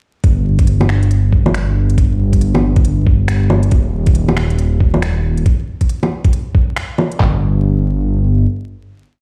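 A skittering, shuffled 16th-note swing at 138 BPM drives this ghostly, nocturnal future garage piece: an up-front, thumpy sampler-style kit of muffled two-step kick, floor tom and handclaps sits beside a quieter, crisp electronic kit of closed hi-hat, low bongos and finger snaps, both re-recorded in a large room with tape-tinged character, over a deep, rumbling detuned saw bass holding sustained roots with sidechain pumping, until the groove gives way at 7.2 seconds to a final bass note that rings to 8.5 seconds amid vinyl crackle.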